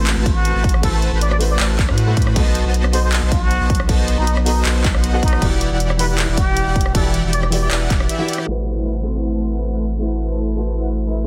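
A breathy, plunger-muted trumpet opens this emotional, dreamy future bass piece in jazz style, its wah-wah vibrato sounding distant and intimate over a dark, mellow concert grand piano in the background, a smooth detuned supersaw riff and a thick, saturated sine sub bass sitting up front. Within the first second a layered, produced dance kit with crash, handclaps, hi-hat and rim click arrives alongside a punchy electronic kick, all moving in a half-time feel through jazzy extended chords. The trumpet, piano, supersaw and sub bass pump under sidechain compression, while tape echo trails the horn and the piano carries a vintage 12-bit sampler grit. The trumpet falls away at 7.8 seconds, and after a brief break the drums end by 8.5 seconds. From there a filter sweeps across the supersaw as a very quiet downlifter sinks beneath the lingering piano and bass, all set in digital ambience with a dense, heavily limited modern master.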